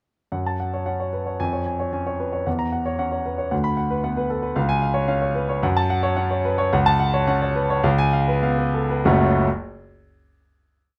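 Heard close and in fine detail with a light reverb, a warm, present grand piano plays alone and up front in this brief, complete classical virtuoso study in F# minor, agitated and passionate, moving with rubato at roughly 96-116 BPM in 4/4. Rippling figuration spans from deep in the bass to high in the treble, with a second figure added by the treble hand, as the harmony passes through F#m, C#, F#7, Bm and C#7. From 3.5 seconds the music slows down, arriving at a final F# minor chord at 9.0 seconds that rings until the piano stops at 9.5 seconds.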